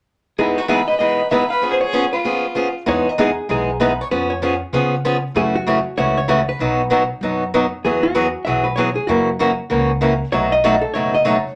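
Country western swing with a cheerful, playful bounce, this short excerpt moves at a brisk, swung clip. A hollow-body electric jazz guitar carries the melody with a dark, clean, compressed tone, while a clear, earthy bowed fiddle with light vibrato adds a second line only for the opening seconds, until 2.7 s. Up front, a picked old ladder-braced acoustic guitar gives boxy accompaniment throughout, the loudest part in the blend. From 2.9 s a woody, thumpy upright bass on gut strings joins underneath, plucked and sitting low in the mix. The chords move through major sevenths, dominant sevenths and an added-ninth colour, and a wet club reverb places the band in a club setting.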